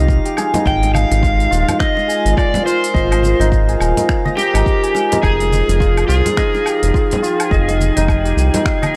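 An overdriven slide guitar carries the melody from 0.7 seconds, dark and up front, its notes trailed by analog delay. Beneath it, a round analog bass sits deep and forward with transformer saturation and sidechain pumping, while a hammered santur plays shimmering, ringing arpeggios through its own analog delay. A warbly, tape-like pad holds mellow, nostalgic chords colored by chorus, reverb and pumping, and a very quiet glassy texture of drifting overtones hovers high above. The swung sixteenth-note groove comes from a layered electronic kick, an electronic kit of finger snaps, smooth hi-hat, shaker and woodblock, and hard-hit, compressed bongos and congas. Cut from a longer piece, this earthy, hypnotic passage of organic downtempo moves from Fm9 to Ab69 and back, with a dry, gritty sound.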